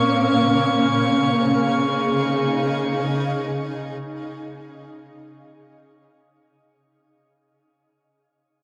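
A cloudy granular pad and a glassy, drifting high texture begin together in free time, holding a single Dbadd9 chord in a serene, spacious ambient moment cut from a longer piece. The full-bodied pad sits up front with slow-blooming sustained tones, while the chorused glass harmonics hover more softly above it, each bathed in its own reverb. A long shimmer reverb and the worn, warbling pitch drift of old cassette tape blur the sound as it fades out across its 6.7 seconds.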